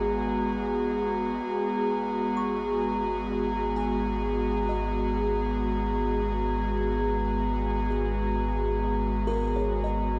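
An airy, breathy pad sits up front holding sustained G#m9 chords with chorus and shimmer reverb, while a buzzing, woody kalimba plays soft arpeggios through analog delay in the background, a round sine sub bass holds G#1 and a glassy, ethereal glass harmonica hovers on A#5, all in a serene, reflective ambient excerpt in G# minor at 65 BPM, tuned to A4 = 436 Hz, with a wet spring reverb, echo-heavy mix and cassette tape character.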